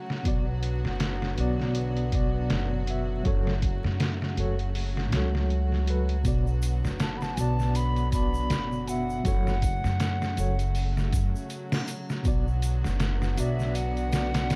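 Brooding and melancholic, this trip hop passage, cut from a longer piece, moves at an unhurried 80 BPM in B minor with a swung sixteenth-note feel, its harmony alternating between Bm and F#m. A bowed chamber string section holds soft-attack sustained chords played sul tasto with light vibrato, while a mellow tine electric piano adds clean accompaniment coloured by tremolo and tape echo. Up front, a pizzicato upright bass sounds woody and thumpy, sitting beside a compressed, pitched-down, muffled sampler-style drum kit whose thumpy kick, medium-tuned snare and hi-hat carry a tape-warm character. At 6.2 seconds a distant egg shaker and triangle enter in the background as if heard in a large room, and at 7.0 seconds a bright wooden flute takes the melody with an airy, straight, tongued tone, close-miked and expressive, trailed by tape echo. The whole production is dark and warm, bathed in studio reverb with a layer of vinyl crackle.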